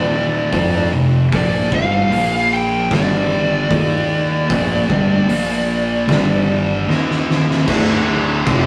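A rough rehearsal-room recording with tube saturation and stone-room reverb carries this brooding, heavy stoner and doom metal excerpt at 76 BPM in 4/4, where a compressed fuzz lead guitar sings its melody up front until 6.9 seconds over a pair of thick fuzz guitar riffs, one dark and forward and the other warm and set back, a growling fingered electric bass with overdriven punch beneath them, and a gritty, oversized low-tuned drum kit with fat snare and punchy kick that enters at 0.5 seconds and plays a fill as the lead drops out, before a bright, double-tracked, biting overdriven guitar joins the riff at 7.7 seconds on a D minor chord.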